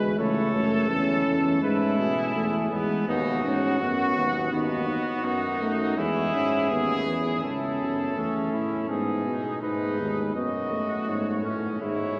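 A warm cornet carries the melody of this solemn yet driving classical canzona excerpt for brass ensemble, joined throughout by a clear trumpet on the second line, a close-miked, mellow euphonium with vibrato in the accompaniment and a bright, vintage-toned bass trombone on the bass, all in imitative style and bathed in the long, wet reverb of a cathedral-like hall.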